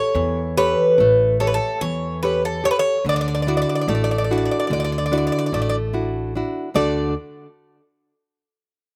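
A bright, metallic Greek bouzouki carries the melody up front, its picked double strings, some doubled at the octave, ringing between A4 and D5 in this short cut from a longer piece of Greek folk music. Beside it, a small, fingerpicked nylon-string guitar, also bright and up front, supplies the accompaniment with a slapback echo. An upright bass enters at 0.1 s, plucked pizzicato on steel strings for a woody, warm low end. The tune moves in 9/8 at 146 BPM counted in eighths with a straight feel in D major, the harmony passing from A7 to Dadd9 at 3.1 s and settling on D at 6.8 s as a new section begins. The mood is tender, and the open-air sound carries little reverb.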